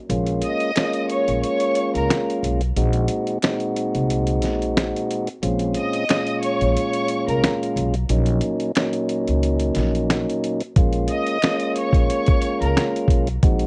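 A mellow tonewheel organ with key click and a stopped rotary speaker, a woody pizzicato upright bass and a gritty sampler-style drum kit open this dark, reflective boom-bap hip-hop excerpt at 90 BPM in Bb minor, with the thumpy kick held back until 10.8 seconds while hi-hat and fat snare carry the swung groove. A bowed violin section enters at 0.4 seconds with vibrato and portamento, its smooth top washed in plate reverb and analog delay, while very quiet finger snaps sit in a live room beneath it. The chords move from Bbm7 through Ab7/Bb, Dbmaj7/Bb and Gb6/Bb back to Bbm7, all colored by the character of a home cassette recording.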